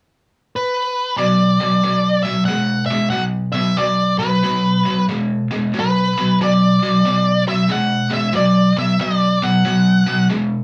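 Smoky and heavy, this swung rock excerpt at 92 BPM in B minor opens with a dark, picked octave-fuzz lead guitar carrying the melody from 0.6 s, joined at 1.2 s by a tight, bright, double-tracked distorted guitar riff over a B minor chord, both parts up front and played live in one room with moderate studio ambience.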